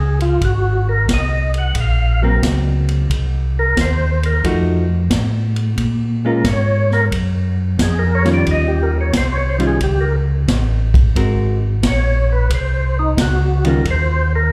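Soulful and swinging, this soul jazz organ trio excerpt moves at a relaxed 89 BPM in Ab mixolydian, with a strong swing on the eighth notes, and is heard as a live club gig through the venue's PA. A percussive tonewheel organ takes the melody as a solo throughout, its fat, lightly overdriven tone carrying key click and second-harmonic percussion through a slow rotary speaker, chorus vibrato and slapback echo. Beneath it, a second tonewheel organ holds down the bass line, mellow, round and dark, also turning through a slow rotary speaker with chorus vibrato. A swinging big-band drum kit enters at 0.2 seconds with hi-hat, ride cymbal, a high-tuned snare and a boomy kick, sounding natural and up front. From 2.2 seconds a dark, clean hollow-body electric guitar adds picked accompaniment with slapback echo, moving over changes such as Ab9, Cm7, F7b9, Bbm7 and Eb9 in a small room ambience with light club reverb.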